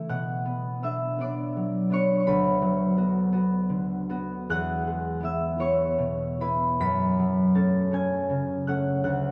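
A lone concert harp opens this short classical passage, its thumb-plucked strings ringing close and up front. The mood is dreamy and peaceful, moving in a flowing 6/8 at roughly 48-57 beats per minute counted in dotted quarters, with a rubato feel that lets the pulse breathe. The harp spans from a deep D2 up to a glistening B6, tuned slightly high at A4 = 441 Hz. Its harmony drifts from B minor to B minor over D, then to E and finally F-sharp minor around 6.8 seconds. A lush church reverb with a long 3.1-second tail surrounds the instrument, giving the 9.3-second fragment of a longer piece a spacious, halo-like glow.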